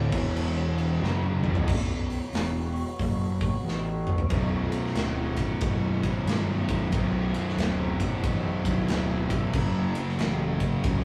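Stoner and doom metal excerpt, hypnotic and brooding with a swung feel, where growly overdriven fingered bass and a punchy, bright-cymbaled rock kit sit up front, three distorted fuzz guitars grind a low riff (one very quiet, bright and double-tracked, the others thick and in the background), a resonant drone of moving overtones with chorus hovers behind, drum fills arrive at 1.0 and 3.6 seconds, chords shift to Bm at 4.3 seconds and F#m at 9.5 seconds, and a rough rehearsal-room recording with stone-room reverb adds saturated grit.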